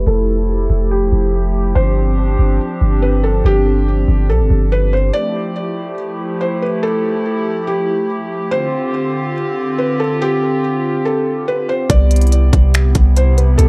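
A deep, sine-toned 808 bass sits up front in this dreamy, floating cloud-rap excerpt at 142 BPM in half-time, dropping out at 5.1 s and returning at 11.9 s alongside a crisp trap kit of finger snaps, hi-hat and hard-clipped kick, while a hollow, flute-like detuned pad with chorus and sidechain pumping holds sustained chords beneath a soft, felt-muted upright piano melody with audible action noise and delay, set in F lydian within a dark, dry production.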